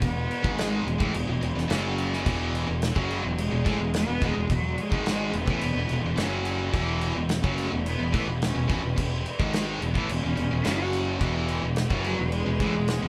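A loose, up-front indie drum kit with dark cymbals and a punchy kick drives this anthemic, bittersweet quiet-loud alternative rock excerpt at a straight 107 BPM in E major, where a growly fuzz bass sits under a tight distorted guitar riff alongside a bright, overdriven semi-hollow guitar riff in the background, while a distant, smooth cello carries the bowed melody with vibrato and a very quiet, lush string section joins at 6.7 s with biting sustained chords, all in a live room with moderate reverb.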